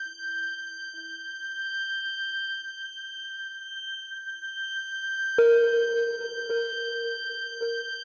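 A vast, echoing space with a five-second cathedral reverb and a dulled top end surrounds this short ambient excerpt, cut from a longer piece and moving in free time. A drifting glass-harmonics texture sustains from 0.0 seconds to the close at 8.0, its glassy, bright overtones drifting calmly around G6 with chorus and its own built-in reverb. The mood is serene and peaceful, hovering with the harmony unsettled until a G minor chord arrives at 5.4 seconds. At that moment a soft, round pluck enters up front with arpeggios near Bb4, its fast attack decaying into a dark tone thickened by chorus and trailed by tape echo. Tuned slightly low at A4 = 439 Hz, the two parts hang together in calm, suspended stillness through the final seconds.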